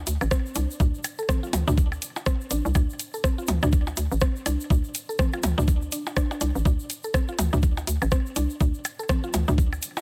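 A swung 4/4 groove at 123 BPM drives this cool, hypnotic minimal techno fragment, cut from a longer piece and running for about 10 seconds. An overdriven, layered electronic kick sits up front, and a hollow, bouncy FM bass with a fast attack pumps against it between A1 and D2. A garage drum kit adds metallic hi-hats and rim clicks with a gritty overdriven edge, while a grainy egg shaker, recorded acoustically in a live room, sits low in the mix. Overdriven electronic blips and toms pass through a digital delay, and a woody, round FM pluck with a noise layer plays a mallet-like riff between C4 and A4, thickened by chorus and echoed by delay as it pumps in time. The mix stays dry and close, with little reverb, and all parts enter within the first 0.3 seconds.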